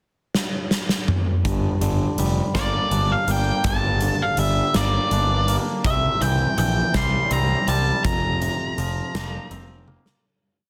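A slow 6/8 at 55 BPM opens with a huge arena drum kit rolling through a fill from 0.4 seconds, its punchy kick and medium-tuned snare pumping in a hall-like space before a driving eighth-note fuzz bass and twangy, clean picked guitar arpeggios enter at 1.4 seconds. This dark, brooding quiet-loud alternative rock piece in G dorian moves from Gm to C to Fsus4, while an octave-fuzz lead guitar sets a gritty, motif-based melody of call phrases up front from 2.6 seconds. The dense, heavily limited mix sits in a small room reverb and fades out from 8.1 seconds as a last drum fill closes it.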